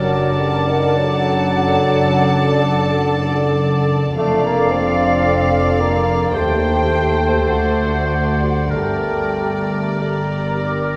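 Elegiac and melancholic, this brief excerpt of a slow romantic orchestral movement drifts with rubato at around 46-58 BPM in 4/4, a chamber violin section carrying the melody with a soft, intimate, lightly vibrating tone over a darker, woody violin section, an airy flute ensemble with rolled-off highs, and a distant, roomy oboe weaving second lines. Beneath them a dark solo bassoon and a lush viola section shape the accompaniment, a mellow French horn section holds sustained chords in the background, and floating, pure cello and double bass sections anchor the bass. The harmony moves from D/F# through Dm/F, Cm/Eb and D7 to settle on Gm at 8.7 seconds, all bathed in a concert hall's long, wet reverb.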